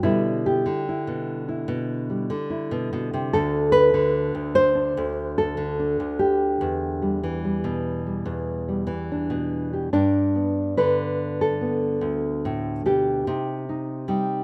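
Folk piece for solo fingerstyle nylon-string guitar in G major, an excerpt cut from a longer work, drifting in a rubato 4/4 around 73 BPM with a nostalgic, warm mood. The thumb-plucked guitar sits up front with a dark, deep classical tone, ranging from D2 to C5 as it moves from G6/B through Em7, settles on G at 9.9 seconds for a second section, then shifts to Cm. A moderate plate reverb lends a long tail to the rough home-demo sound.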